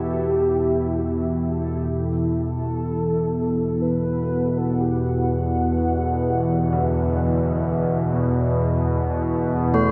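This dark ambient drone piece, cut from a longer work, drifts in free time around E minor with a desolate, dark mood, moving from an E minor chord to an open E5 sonority. An up-front analog drone anchors the low end, its detuned sawtooth and pulse tones, touched with ring modulation and chorus, slowly evolving beneath everything. Above it, a deep, moody pad built from unison sawtooth and sine layers with a sub octave holds sustained chords, softened by chorus and its own reverb. A mellow, round, horn-like synth lead carries the melody with a soft attack, vibrato and a filter sweep, colored by subtle chorus and tape echo. A concert grand piano enters at 6.7 seconds with low, natural-sounding arpeggios in the background, trailing tape echo, and at 9.7 seconds a bright, metallic bronze singing bowl rings out up front, struck with a wooden striker and slowly beating. The whole recording is bathed in a huge, wet reverb.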